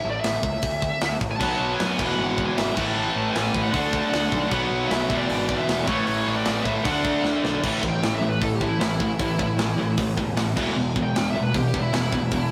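Rowdy and rebellious, this punk rock passage, cut from a longer piece, charges along at 154 BPM in a straight 4/4, with a high-gain lead guitar carrying the melody over a growly, fuzz-soaked picked bass and a tight, gritty, mid-forward metal drum kit with a medium-tuned snare. At 1.4 s a pair of bright, overdriven rhythm guitars joins with a picked riff, one up front and the other sitting in the background. A drum fill at 7.2 s launches a lead guitar solo at 7.6 s, and the whole take carries the rough feel of a rehearsal room with a moderate stone-room reverb.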